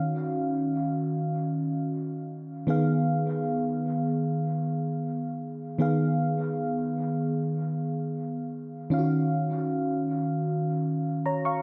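Late-night and moody, this brief R&B excerpt drifts in free time in Eb minor, carried by a lone mellow FM electric piano that sounds soft, round and dark, with a chorus sheen and a noise layer beneath its fast attack and decaying notes. The piano moves from Ebm7 to Abm6/Eb at 2.7 seconds, then settles on Ebm9 when a new section opens at 8.9 seconds, ranging from Eb3 to Db6. Dub echo and a moderate spring reverb with digital ambience give the piano an echo-heavy setting while it stays up front in the mix.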